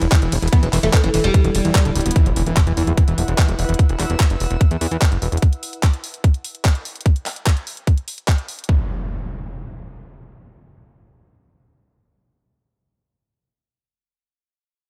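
An overdriven electronic kick drum sits up front in this hypnotic psychedelic trance excerpt at 147 BPM in E minor, joined by an overdriven garage kit of handclaps, hi-hat and ride cymbal. The clip opens on a drop over an E5 chord. A woody, plectrum-plucked fretless oud with double strings carries the melody through phaser, delay, sidechain pumping and vintage 12-bit sampler grit, over a morphing, warbling wavetable pad in the background. A fat, detuned sawtooth analog bass with tube saturation drives underneath, while a squelchy, screaming distorted acid line with a resonant filter and chorus riffs further back. After a drum fill at 2.0 seconds, an electronic impact arrives as the acid line's filter sweeps, and an airy, breathy pad enters in the background with chorus and sidechain pumping. At 8.7 seconds the chords give way and a second impact carries the final seconds, with little reverb keeping the mix close and dry.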